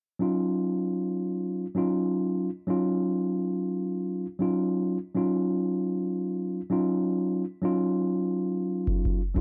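A mellow tine electric piano carries this short excerpt from a longer boom-bap hip-hop track, sounding clean and direct with a cassette-tape coloring, starting on an Eb minor 9 chord at 0.2 seconds. Its voicing sits between Gb3 and F4, placed up front in a dry, gritty hardware recording with little reverb. The mood is tough and moody, set at 97 BPM in 4/4 with a 58% swing on the sixteenths, in Eb minor. At 8.9 seconds a deep, analog electronic kick drum arrives up front with a tape-warm weight, playing a brief drum fill. Both parts run until 9.4 seconds, where the excerpt ends.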